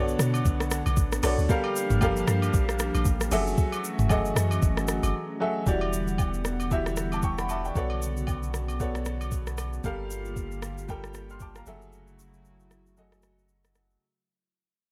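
Amapiano at 115 BPM with a soulful, hypnotic swing, built on an intimate, boxy grand piano with audible action noise and a hollow, flute-like pad with chorus, while a smooth electronic R&B kit of soft kick, metallic hats, rim click, shaker and toms sits up front, vintage agogo bells and woodblock sit low in the mix, a dark, round log drum bass carries the low end until 5.1 seconds, and a punchy sine sub bass with a pitch-drop attack takes over at 5.7 seconds as the excerpt begins to fade out over Bm9, Gm9, F#m9 and Em9 chords.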